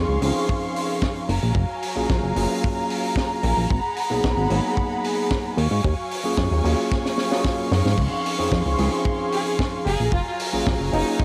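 Sunny and feel-good, this nu-disco excerpt rides a glossy, chorused synth bass with tube saturation and a tight funk drum kit with a high-tuned snare, anchored by an up-front acoustic kick that enters at 0.5 s, the drums colored by cassette tape, with a drum fill at 6.9 s. A barky, overdriven tine electric piano through a combo amp plays accompaniment over veiled, con sordino strings holding sustained chords, both pumping with sidechain, as the harmony moves through lush seventh, ninth and eleventh chords. At 9.3 s a dark violin section enters with an expressive, smooth-topped melody full of vibrato and portamento, trailed by analog delay, all within a light studio reverb and a homespun cassette sound.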